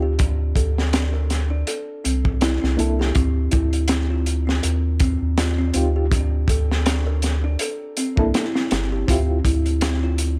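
Trip hop in D minor at 81 BPM with a lightly swung 16th feel, melancholic and dark, moving through chords such as Bbmaj7/D, C13, Eb69 and a closing Dm11. A reedy, worn, slightly out-of-tune electric piano with fast tremolo and tape echo plays accompaniment until 9.4 seconds, while a delicate, tinkling music box spins arpeggios through digital delay. Underneath, a round, deep dub sub bass sits up front, and a crunchy, saturated breakbeat kit of tight kick, high-tuned snare and hi-hat enters at 0.2 seconds with its top rolled off, in a dry, close mix.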